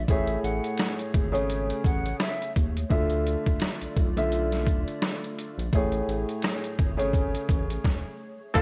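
Soulful, warm boom-bap hip-hop in A major at 85 BPM with a swung 16th-note feel, cut from a longer piece, where a breathy, close-miked concert flute sings an expressive line over the first 2.5 seconds while a hollow, chorused pad sits softly in the background. A round, dark analog bass with tube saturation, a clear but boxy baby grand piano, and a gritty, pitched-down sampler-style drum kit with a thumpy kick and rim clicks carry the groove through Amaj7 and Dmadd9 chords, the piano and drums carrying a cassette-tape tint, all within small-room reverb. A stop hits at 7.8 seconds, and a bright jazz saxophone section with vibrato punches in with an up-front stab at 8.5 seconds.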